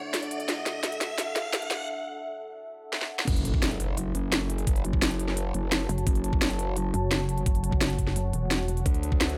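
Tense and futuristic, this dark technical drum and bass excerpt opens with a deep, moody sawtooth pad pumping beneath a chorus sheen, while an electronic riser and an up-front drum kit with a cracking snare, crisp hats and tape-warm colour build to a drop at 3.3 seconds, where an impact hits, a growling, formant-filtered bass and an overdriven knocking kick arrive, and a detuned, pulsing pluck wobble bass joins at 5.9 seconds.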